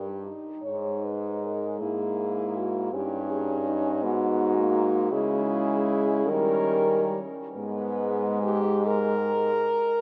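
Classical and lyrical, this brief excerpt for horn quartet carries an elegiac, solemn mood at a slow, rubato pace of 44-56 beats per minute in a swaying 6/8, set in G# minor. A mellow French horn sings the melody with light vibrato and a soft attack, sounding distant and roomy, until it stops at 8.8 seconds. A clear, up-front horn shapes the second line and is the last voice sounding at 10.0 seconds, while a warm horn with vibrato fills in the accompaniment from further back. Beneath them, another clear horn carries the bass with light vibrato, a soft attack and a vintage, narrow-band tone. A wet church reverb with a long tail surrounds the ensemble, and the harmony moves through G#m, C#m and D#7 before settling back on G#m.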